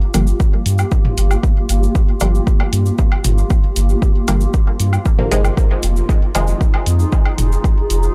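A straight 4/4 dub techno groove, cut from a longer piece, is driven by a punchy analog kick entering at 0.4 s, with an electronic hi-hat, a grainy bright cabasa and overdriven, echoing electronic woodblock and toms. A round sine sub bass with tube saturation sits up front beneath muted, detuned sawtooth chord stabs carrying chorus, phaser and dub echo, while a cloudy, evolving granular pad drifts behind. Bass, stabs, pad and the woodblock and toms all pump to the kick, and the Gm7 harmony shifts to Fm7 at 5.6 s in a deep, cavernous mix with a gritty, dry hardware character.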